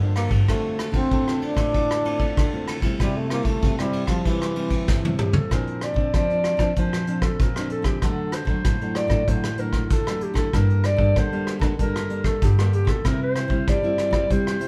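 Two fingerpicked nylon-string guitars, one carrying the bass with audible finger squeak, open this playful, lively samba and choro piece at 96 BPM. They are joined at 0.2 seconds by a dark, up-front brush drum kit and a breathy, distant trombone melody with light vibrato and scooped notes. A drum fill at 4.9 seconds then leads into a mellow clarinet, which enters at 5.2 seconds and takes a solo from 5.5 seconds over chords moving from Dm7 through Bbadd9 to Gm, with the band playing live in a moderately reverberant large studio room.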